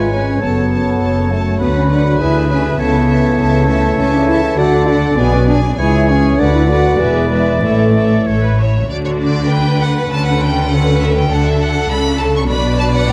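In a straight 2/4 at 99 BPM, this lively, cheerful classical-period movement for symphony orchestra opens in A major, its focused, vibrato-rich violins carrying the melody over a second violin line, a smooth viola accompaniment, and a lush double bass section up front with expressive cellos. A clear oboe, airy hollow flute and soft-attacked clarinet add second lines while a mellow bassoon accompanies and a French horn section holds sustained chords, the horns falling away at 8.2 seconds and the woodwinds at 8.6 seconds. From 8.9 seconds the strings continue alone in D major, set in a moderate scoring-stage reverb with a touch of vinyl crackle.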